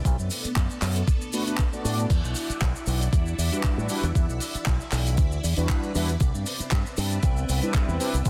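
An overdriven, thumpy electronic kick sits up front in this sensual, groovy nu-disco cut, joined by a punchy fingered electric bass through an envelope filter, a dry, polished funk kit of hi-hat, handclaps, shaker and crash, and a very quiet, close tube shaker. A lush vintage string machine holds slow-attack sawtooth chords with ensemble chorus and sidechain pumping, while mellow synth brass, round and dark with detuned sawtooth tone, chorus, delay and a cassette-tape haze, enters at 1.3 s. The harmony moves from Bm7 to Em9 and on to Cmaj9 over a light sixteenth-note swing, set in a dense, heavily limited modern master.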